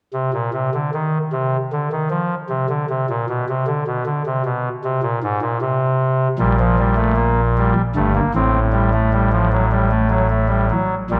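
In a straight 4/4 pulse, this short cut from a longer baroque-style four-part fugue sets a solo chamber organ, its soft oboe reed stop chamber-voiced and up front with a chiff, against the dark, lingering reverb of a concert hall, moving from unharmonised lines into Gm/Bb at 6.4 seconds and on through Gsus4 to F#m/A in a mood both driving and contemplative.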